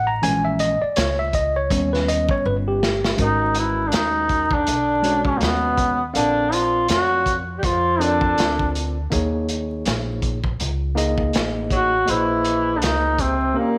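Smoky and cool, this jazz-hop piece opens on a worn, slightly out-of-tune tine electric piano with light overdrive alongside a woody pizzicato upright bass, with a crunchy, saturated breakbeat kit with a gritty, rolled-off top entering a moment later; after a drum fill, a roomy duduk steps up front at 3.2 seconds with vibrato, scooped notes and slapback echo in a folk style, shadowed in the background by a mellow, vintage tenor saxophone, over light small-room reverb and vinyl crackle.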